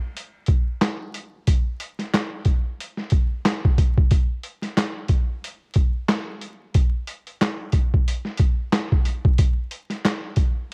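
At 0.2 seconds a boom bap drum kit comes in, playing a swung 4/4 hip hop groove in this short, nostalgic and soulful cut from a longer piece. The sampler-style kit of kick, snare, hi-hat and handclaps sits up front, compressed and pitched down, with a gritty edge. Its thumpy kick and medium-tuned snare carry a tape-warm tone and the feel of being re-recorded in a small room. The recording has a worn, old-cassette character, with vinyl crackle and a warbly pitch drift under a touch of light reverb. The drums hold this single section until the cut ends at 10.7 seconds.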